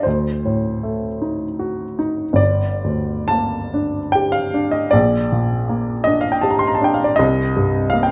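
A rubato 3/4 pulse drifting between 62 and 82 BPM carries this mournful, melancholic romantic nocturne in G minor, played on a solo baby grand piano that sounds dark, mellow and intimate, with audible action noise and short sustain, placed up front in a moderate recital hall reverb as it spans G1 to C6 and moves through D7b9, Gm, Gm/Bb and Cm7 across its 8.1 seconds, cut from a longer piece.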